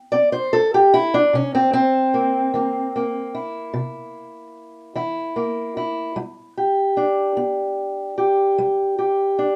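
Rolling in a straight 12/8 at 50 beats per minute, this acoustic country blues fragment, cut from a longer piece, carries a rollicking, swaggering mood. A lone fingerpicked steel-string parlour guitar, up front in a small room with moderate reverb, plays from 0.1 to 9.6 seconds, spanning C3 to D5 with a dark, woody, boxy tone of old strings. The harmony sits on C7 before moving to G at 6.2 seconds.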